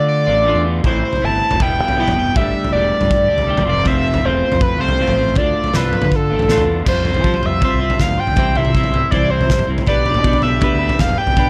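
A moody, bittersweet indie rock excerpt in a moderately reverberant studio room at 160 BPM, where a screaming, sawtooth-edged synth lead with chorus and vibrato carries the melody up front over a crunchy, double-tracked overdriven guitar riff and a round, fuzzed fingered bass, while a loose acoustic drum kit with a fat snare, punchy kick and dark cymbals enters at 0.8 seconds, moving from Dmadd9 through Fmaj7 before shifting at 6.9 seconds to a Fsus2, C and G passage.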